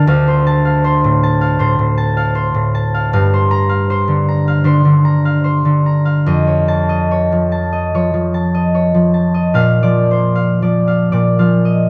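Serene and peaceful, this short classical excerpt features a solo concert harp in a rubato 4/4, its fingerpicked strings ringing warmly and sitting up front under close, detailed microphones with light reverb. The harmony drifts from Dm7 through Gm11 and Faug7 before settling on a Bb chord at 9.6 seconds, where a new section begins.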